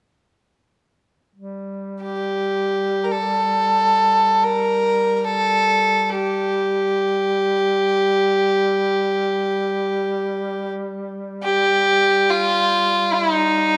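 Unfolding in free time, this short cut from a longer Caucasian folk lament sits in G minor and carries a longing, solemn mood. A duduk enters at 1.4 seconds, holding a low drone on G3 that sounds distant and roomy, with vibrato and scooped notes in a folk style, and it sits well beneath the melody in the balance. At 2.0 seconds a single bowed fiddle takes up the melody, moving between Eb4 and Bb4 with a nasal, gut-string tone that is reedy with a smooth top. The fiddle is placed up front, clearly leading over the drone. Both parts continue together until the close at 13.8 seconds, bathed in a wet church reverb that lends the lament a spacious, solemn air.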